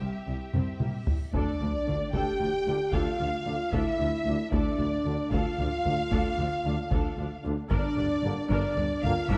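Heroic and dramatic, this epic orchestral film-score excerpt moves at 75 BPM in 12/8, as lush bowed strings and mellow French horns build over close, dry taiko drums, with a huge, bright reverse cymbal and sub drop striking at 1.3 seconds to launch soft-attack trumpet stabs, a hollow, airy flute ensemble, a background tuba and distant, roomy trombones over C, Dm and Gm chords, all framed by a moderate scoring-stage reverb in a dark, warm production.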